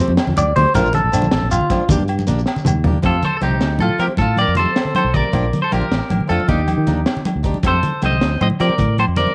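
A straight-feel 12/8 groove drives this danceable, carefree highlife guitar band snippet, where a gritty, dark breakbeat kit with a high-tuned snare and a fill leading into the new section, damped thick-skinned congas, ringing agogo bells in the background and a grainy shekere that drops out at 2.8 s sit beneath a round fingered bass and a woody, boxy archtop guitar on old strings, while a twangy, scooped electric guitar plays slapback-echoed arpeggios from 0.4 s and a bright, compressed electric guitar with subtle chorus carries the melody from 3.1 s over Fadd9, Bbmaj7 and Ebmaj7 chords in light small-room reverb.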